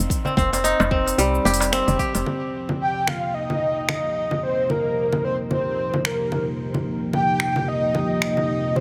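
A bright, fingerpicked kora with digital delay opens this mystical, hypnotic organic downtempo excerpt over a round, woody FM bass, a deep electronic kick, a crisp metal-shell darbuka and a deep house kit of congas, finger snaps, smooth hats and shaker, before a dark, detuned analog pad with chorus and sidechain pumping arrives at 2.3 seconds and a breathy, flute-like synth lead with vibrato and delay enters at 2.8 seconds.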